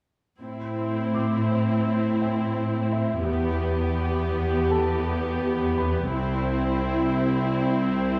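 Set in a straight 4/4 pulse, this brooding, relentless passage of cinematic film score blends orchestral and electronic sensibilities, cut from a longer piece. A lush viola section carries the accompaniment from 0.4 seconds, bowed with a smooth, even vibrato and sitting up front, while a cello section anchors the bass beneath it with soft attacks and expressive vibrato. At 1.1 seconds a grand piano enters in the background, its boxy, short-sustained notes high in the register and trailed by delay. The harmony moves from A minor to E minor and then to C major, giving the strings a heavy, searching weight. A moderate scoring-stage reverb and a dark production wrap the ensemble in a shadowy, enveloping space.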